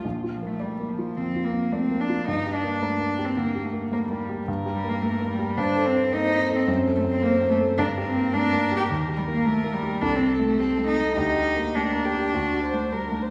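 A quick classical-period movement for piano trio, this dramatic and urgent passage moves at 108 BPM in 4/4 with a rubato feel, settling into G minor from 4.5 s. All three instruments play throughout the roughly 13-second span, cut from a longer piece. The violin carries the melody between F#4 and D5 with a dark, woody tone, vibrato and a smooth top, while the cello, bowed sul tasto with a soft attack, sits up front and supplies a rich, pure, floating second line. The grand piano's accompaniment reaches from Bb1 to A4, its intimate, natural sound set up front with audible action noise. The harmony travels from Bb through Gm, Cm13/G and F#dim, returns to Gm, then moves through Eb and Cm6 to Gm/D before landing on D at 12.3 s. The ensemble is heard from further back in a recital hall whose reverb, with an RT60 of 1.6 s, lends the playing a wet sheen.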